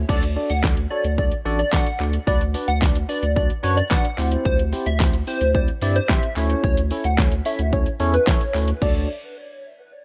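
A saturated sub bass opens this carefree, euphoric dance-pop excerpt, deep and thick, sitting up front and pumping against the beat, before a punchy pop drum kit with fat snare, metallic hats, handclaps, shaker and crash joins almost at once. A catchy plucky lead built from detuned square and sine layers with a touch of noise carries the melody through a filter sweep and dub echo, while a bell-like tine electric piano adds clean, chorused chords that move from D through Bm/D, C/D and A/D, each voiced over D. The sound has digital ambience and the loose feel of a rough home demo mix, and the bass and lead play on to the end at 9.1 seconds.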